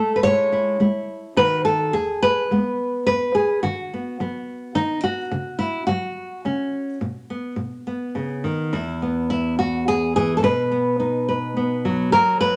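A fingerpicked nylon-string guitar carries this short folk piece alone, its bright, classical tone sitting up front in the mix. The mood is gentle and nostalgic, moving at 106 BPM in a straight 3/4 feel in E major, with the tuning set slightly low at A4 = 438 Hz. The guitar ranges from a low E2 up to C#5, drawing its harmony around E and B chords with passing colours such as B/D# and F#5/C#, and a brief chordless moment near 7.0 seconds. A new section begins at 8.7 seconds, settling on an E5 sound before returning to B. A moderate, large studio reverb gives the instrument a sense of space, and the clip is cut from a longer piece, ending at 12.6 seconds.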